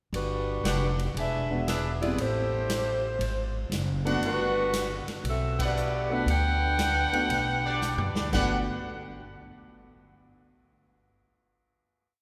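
Swung eighths in 4/4 drive this energetic, joyful big band swing piece, where an acoustic drum kit plays a backbeat and ride cymbal pattern under a woody pizzicato upright bass in a two-feel, a mellow, up-front saxophone section carries a motif-based melody in four-part block voicing, a bright, distant trumpet section adds syncopated stabs in drop-2 voicings, a warm grand piano enters at 1.5 s with rootless comping, a band accent lands at 5.5 s, and a drum fill at 7.8 s leads into a final chord ringing out in a wet church reverb.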